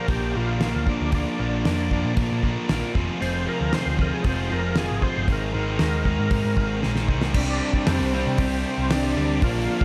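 Classic rock at 116 BPM in C minor, gritty and driving, where a thick, overdriven tonewheel organ with slow rotary speaker and slapback echo carries the melody over riffs from a dark overdriven semi-hollow guitar and a bright, tight distorted guitar, anchored by a round, hollow-body short-scale bass and a damped 70s drum kit with a fat snare and rolled-off top, while a very quiet, mellow string machine cello pad with ensemble chorus enters at 3.2 seconds, a drum fill at 6.8 seconds leads into a new section, and a lush hall reverb gives the whole band a big arena sound in this excerpt from a longer piece.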